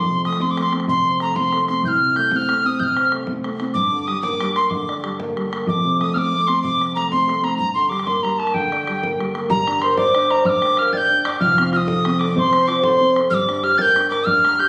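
Celtic folk slide in G minor, this dark, lively and driving cut from a longer piece moves in a straight 12/8 at 125 BPM, alternating F and G minor chords. An up-front tin whistle carries the melody with a pure, crisp chiff, vibrato and lifted highs, over a mellow, long-sustaining dark grand piano, while a damped, tight bodhran enters at 0.3 seconds. At 9.5 seconds a bright, ringing fingerpicked Celtic harp adds a second line and a woody pizzicato upright bass sits in the background, all within a phone recording of the room treated with moderate studio reverb and compression.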